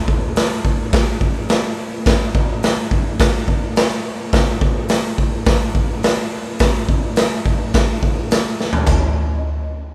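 Raw and rowdy, this short rock clip is carried entirely by a garage drum kit playing a straight 4/4 groove. The acoustic kit sits up front, with a punchy kick, a medium-tuned snare, hi-hat, toms and a splash cymbal. Its sound is saturated and gritty, with a rolled-off top and a bright stone room that pumps around the hits. A drum fill arrives at 8.6 seconds, leading into a brief new section at 8.9 seconds before the kit stops at 9.0 seconds. Light reverb and the feel of a band playing live in one room give the cut-off passage a loose, unpolished energy.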